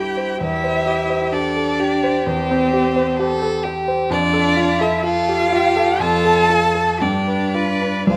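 A dark, expressive violin sings the melody with vibrato and portamento over a rich, even cello line, a smooth second violin and an up-front concert grand with deep bass, the four parts sounding together from the start of this tender, warm, rubato slow romantic movement for piano quartet, cut from a longer piece and set in a moderate recital-hall reverb as the harmony moves from C/E through F to G7.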